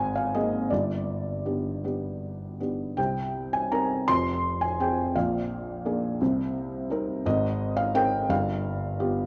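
Wistful and dark, this brief classical excerpt for solo piano moves in a rubato 6/8 at about 52-58 BPM (counted in dotted quarters), in C minor with tuning at A4 = 441 Hz. A felt-muted upright piano plays alone for the full 9.3 seconds, ranging from F1 to C6. Its tone is soft, mellow and intimate, with short sustain and audible action noise, and it sits up front. Its harmony drifts from Abadd9 through Cm7, Fm and Bb7 before settling on G7. A moderate recital-hall reverb surrounds the instrument, and the whole recording carries the worn, warbling pitch drift of old cassette tape.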